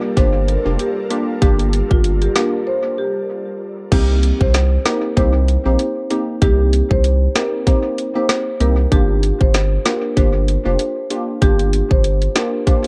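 This is a dry, echo-heavy mix, with little reverb on the room and delays ringing off the melodic parts. It is a bouncy, tough dancehall excerpt at 96 BPM in C dorian, with a light swing on the sixteenths. An ethereal, airy pad holds sustained chords with ensemble chorus, built-in reverb and sidechain pumping, and it stops at 3.9 s. A marimba with medium mallets carries the melody with analog delay, over a glassy, crystalline wavetable pluck that adds detuned accompaniment with chorus and delay. A saturated, thick sub bass and an up-front island pop drum kit anchor the groove. The kit has a tight kick, woody snare, hi-hat and crash cymbal. The chords move from Gm7 to Cm7 at 3.9 s and back to Gm7 at 8.9 s.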